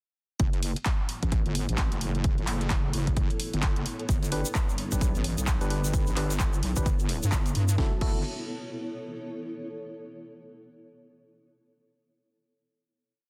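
A punchy, overdriven four-on-the-floor kick drives this swaggering, gritty bass house piece at 130 BPM in 4/4, with a 60% swing on the sixteenths. It sits up front beside a programmed house kit of closed and half-open hats, crash cymbal, and a cracking snare and handclaps on the backbeat, both re-recorded in a large room. The heavy wobble bass, a saturated, detuned square-and-sine tone with chorus, overdrive and sidechain pumping, plays modulated phrases in F# phrygian whose wobble keeps shifting, over a very quiet, moody analog pad holding F#m7 and then G. From 1.1 seconds a blurred granular cloud pad drifts in with its own reverb and slowly shifting chords, and at 4.1 seconds a grainy, hand-played egg shaker adds sixteenths, joined moments later by hollow, organ-like stabs with chorus and delay punching out syncopated close-voiced chords. The drop gives way to a final F#m7 chord at 7.8 seconds, closing a dense, heavily limited modern mix.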